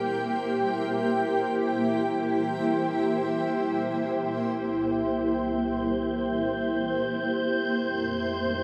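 Ambient in free time, this melancholic, spacious passage from a longer piece sets a cloudy, detuned granular pad up front, holding sustained chords from C7 to F7, over an airy, wind-like tuned noise texture in the background, while a deep, ominous rumbling drone fades in from 4.7 seconds, all bathed in a huge, wet reverb.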